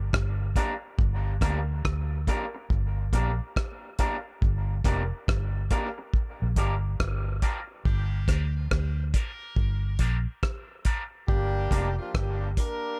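A slow, swung 70 BPM dub reggae groove in 4/4 sits on a G minor chord, with a dry, cloth-damped drum kit of tight kick, hi-hat and rim click under a round, punchy, foam-muted electric bass, both up front in a small room. A twangy, slightly broken-up electric guitar accompanies through a high-pass filter and dub echo, and a filter sweep runs from 4.4 to 11.3 seconds as the opening break gives way. At 7.9 seconds a tight horn section with light vibrato and octave doubling enters, also filtered and echoed, keeping this spacious, meditative passage from a longer piece hazy and unhurried.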